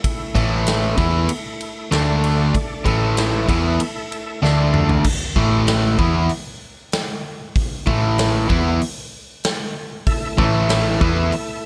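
Blues rock and southern rock in the power trio mould, this smoky, brooding excerpt moves at a steady, straight 4/4 over power chords on A and D. From 0.3 seconds, a crunchy, bright double-tracked electric guitar carries the picked riff up front alongside a dark, round hollow-body bass played with the fingers. A big acoustic drum kit with bright cymbals, a punchy kick and a medium-tuned snare sits forward in a natural, roomy sound, and a drum fill from 4.4 to 5.0 seconds leads into the repeat of the opening section. Behind them, a gritty, overdriven tonewheel organ holds thick sustained chords through a slow rotary speaker and chorus vibrato, with percussive second-harmonic attack. The organ drops out at 5.0 seconds and returns near the close, while small room ambience gives the whole band a close, lived-in feel.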